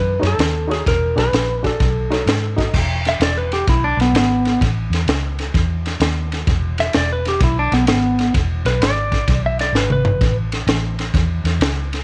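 Electric blues shuffle with a laid-back, gritty swing, cut from a longer piece, where a twangy, clean lap steel guitar carries the melody up front over a round, foam-muted vintage bass and a saturated, punchy breakbeat kit with dark cymbals and a high-tuned snare. A jangly, detuned honky-tonk upright piano adds woody accompaniment only from 0.2 to 2.7 seconds, after which an electric slide guitar solo takes over at 2.7 seconds. A drum fill lands at 9.7 seconds, all in a small room ambience.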